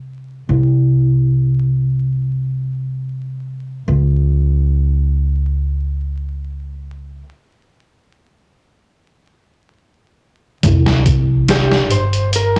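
A blown-out, overdriven recording with vinyl crackle and small room ambience frames this dark, cinematic trip hop fragment in free time, where a woody, pizzicato upright bass with tube saturation plays on its own through a break until gritty, pitched-down sampler-style drums with a thumpy kick land alongside a very quiet sub drop at 10.6 seconds, and a clean, fingered electric guitar with tremolo adds a brief melody from 11.5 seconds.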